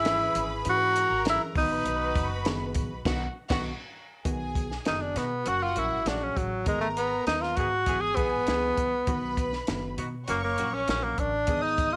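Joyful and danceable, this cut of uptempo 1960s-style soul puts a breathy tenor saxophone with scooped notes up front over a tight vintage horn section in the background, lush bowed studio strings, a reedy, slightly out-of-tune electric piano heard through its built-in speakers, woody pizzicato upright bass and a compact, dark cocktail drum kit with a high-tuned snare and punchy kick, set in a small room with light reverb, as a band accent lands at 3.1 seconds before the saxophone takes its solo from 4.3 seconds.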